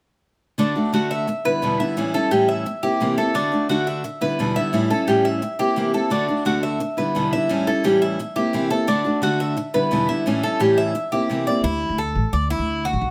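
A picked steel-string acoustic guitar and a metallic, double-strung Cuban tres open this danceable Latin excerpt together at 0.6 s, the guitar picking a bright concert-style accompaniment while the tres spins arpeggios above it through a repeating cycle of D, Em7, A7 and C7. At 11.6 s the guitar drops out and a woody, thumpy pizzicato upright bass enters beneath the tres on a Dsus2 chord. All three instruments sit up front in a moderate large-studio reverb.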